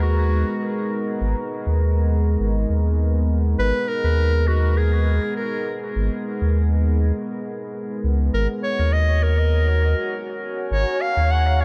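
Ambient dub with a meditative, spacious mood, where a bright, present solo clarinet carries a classical-style melody through dub echo over a deep, moody pad of slow-attack chorused chords and a round, saturated sub bass sitting up front, with the harmony shifting at 8.3 seconds in a light small-room ambience.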